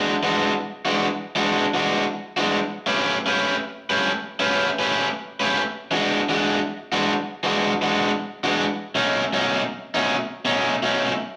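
Soulful and gritty, this short blues excerpt carries a loose, swinging feel in four. A lone overdriven electric guitar plays the whole passage as a solo, its bright, picked tone sitting up front from the first moment until it stops at 11.1 seconds. The line moves between B2 and B4, over a harmony that runs through E9, A9, E9 and then B9 in a single section. A large studio reverb adds a wet, roomy bloom around the guitar. The result is a raw, expressive snapshot that feels lifted from a longer performance.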